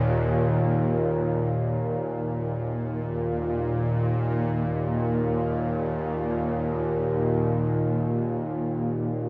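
In free time with a tuning of A4 = 441 Hz, this dark, unsettling ambient fragment, cut from a longer piece, opens on an Eb5 held from the first moment by a solo bowed-like drone spanning Eb2 to Bb2 that moves into a second section at 4.5 s. The drone sits up front, string-like yet nasal and sawtooth-edged, with detuned unison layers, a noise layer, vibrato, a slow attack and long release, and its own built-in reverb and tape echo. The echo-heavy mix places it in a wet echo chamber with a 2.2-second decay, and the cassette tape sound keeps everything below 7.5 kHz.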